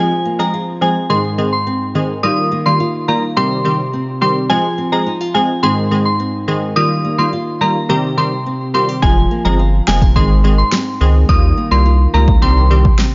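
This dancehall excerpt is sultry and hypnotic, cycling a four-chord loop of Fm, Ab, Ebadd9 and Cm. A soft, pure FM synth bell carries the melody up front, its gentle, warbling, vintage tone softened by chorus and tape echo. Beneath it, a crisp, detuned wavetable chord stab adds digital brightness with a filter sweep and decaying hits. A fingerpicked flamenco guitar plays acoustic arpeggios, with audible finger squeaks and a touch of tape echo. At 9.0 s a thick, saturated sine sub bass and an electronic deep house kit arrive, with a punchy kick and fat snare sitting prominently in the mix. The sound has a light reverb and a mellow top end.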